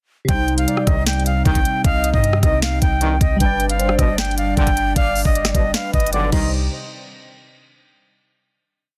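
Menacing and dark, this short trap hip hop piece at 154 BPM rides a half-time feel in C harmonic minor, setting a looping, reedy silver concert flute melody with digital delay over glassy, detuned digital keys, a velvety synth counter-melody with portamento, a hollow pad in the background, knocking trap drums with fast hi-hat rolls and long, boomy 808 sub-bass notes that follow the kick, while clear brass stabs join at 0.9 s as the chords move from Cm to G and back before a final hit at 6.5 s, in a dense, heavily limited, dry mix.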